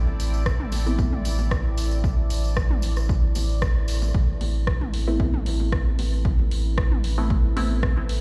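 Meditative and hypnotic, this dub techno excerpt rests on a punchy, up-front electronic kick and a round, soft sub bass that pumps under sidechain, beneath a moody, detuned sawtooth pad holding sustained, pumping chords in chorus and reverb, while a muted, detuned chord stab appears at 0.9 seconds and returns at 5.1 seconds with a filter sweep, phaser and dub echo; dark hi-hats and rim clicks from a deep house kit ring out in dub echo, overdriven electronic bongos and toms sit in the background, and a jingly tambourine drops out at 4.1 seconds, the whole heard as if through a big sound system in a bare stone room.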